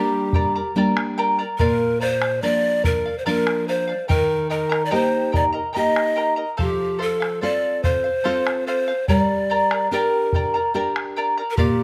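A breathy, hollow cane pan pipe melody with vibrato and tongued chiff opens this festive yet melancholic Andean folk excerpt in G minor, moving at 72 BPM in 3/4 over a shimmering, fingerpicked charango with double strings and a deep, bright nylon-string guitar whose finger squeaks come through the close, detailed sound. A round, vintage-toned bombo joins at 0.3 seconds. The harmony moves from G minor through Bb, Eb and F before returning to G minor at 9.1 seconds, all set in light reverb.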